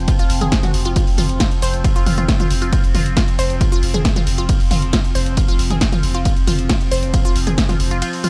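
A thick, saturated sine sub bass and a slow-blooming sawtooth drone, ring-modulated with moving overtones and treated with chorus and built-in reverb, open this dark, relentless stretch of driving peak-time techno, both pumping against the sidechain. From 0.1 seconds a juicy, squelchy pluck with a sub octave and noise layer cuts through with filter sweeps, phaser, sidechain pumping and dub echo, over a layered electronic kick set up front with a small-room character and an analog drum machine supplying a punchy snare, hi-hat, ride cymbal and toms. The kick stops at 7.7 seconds while the drone, pluck and drum machine carry on in a digital ambience.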